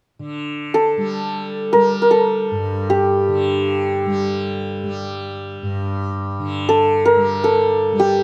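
Longing and solemn, this short passage of Indian classical music in free time opens on a softly plucked, buzzing tanpura drone at 0.2 s, joined at 0.7 s by an up-front santur whose hammered, ringing notes shimmer, all captured with close, detailed microphones and light reverb.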